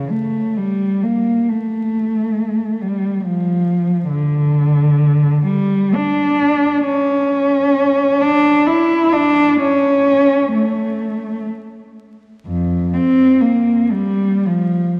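A dark, crackling recording steeped in a wet church reverb carries a mournful, lonely classical excerpt in D minor, where a single woody cello sits up front, bowed with vibrato, wandering freely in rubato 3/4 between roughly 51 and 71 BPM.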